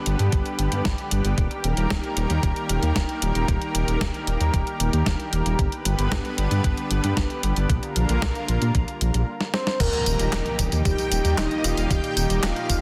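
A lush, thick unison pad opens this dreamy, uplifting synthwave passage in Eb major at 114 BPM, its detuned sawtooth chords sustained with a slow attack, chorus and sidechain pumping. A dark, detuned saw bass with a deep, rumbling tone sits up front beneath it and is also sidechain-pumped, while a thumpy electronic kick and a clean 12-bit drum machine drive a straight 4/4 groove with a fat snare, handclaps, hi-hat, tambourine and crash, both kits sampler-style and tape-warm. The harmony moves through G, Eb, G and Bb6 before the groove stops briefly and a drum fill leads into a new section at 9.8 seconds, returning to Eb. A soft, round, octave-layered synth lead with vibrato, chorus and delay carries the melody from 9.5 seconds, joined by a shimmering vintage string machine playing a higher violin line and a background electronic impact. The mix has a moderate lush hall reverb and a dense, heavily limited modern master, and the passage is cut from a longer piece.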